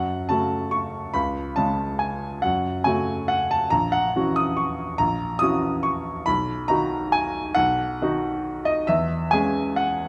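Heard up front in a moderate recital-hall reverb, a clear, natural baby grand piano with short sustain plays a playful, graceful classical waltz solo at 140 BPM in 3/4 with rubato and uneven beats, ranging from A#1 to D#6 as it moves from F# minor into B major at 3.7 s in this passage cut from a longer piece.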